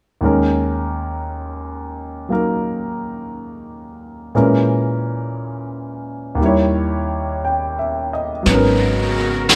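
Wistful and intimate, this slow jazz ballad at 58 BPM swings gently in 4/4 as a clear, up-front concert grand piano with deep bass and short sustain plays alone from 0.2 seconds through chords like D#7sus4, A#m7b5 and D#7b9. At 8.5 seconds the band arrives on a G#m11: a woody, thumpy pizzicato upright bass, a vintage brush kit with a mid-forward, rolled-off snare and hi-hat, and a dark, veiled con sordino cello section holding soft-attack bowed chords with light vibrato. A wet stone room reverb gives the feel of a band playing live together in one space, and this short excerpt is cut from a longer piece.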